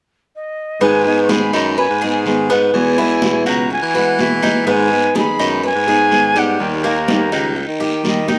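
A dry recording with little reverb carries this nostalgic, danceable passage of Cuban son and guajira, cut from a longer piece. An airy, metallic jazz flute with vibrato and a crisp, chiffy attack sings the distant, expressive melody from 0.3 seconds, and at 0.8 seconds the rest of the band joins: a fingerpicked classical nylon-string guitar in warm accompaniment, a picked Cuban tres with metallic double strings and slapback echo playing arpeggios, and a breathy, punchy baritone saxophone with light vibrato holding the bass line up front. Bright, high-tuned congas played with soft hands and a raspy guiro sit far back in the mix, adding a light percussive pulse over a minor-key progression.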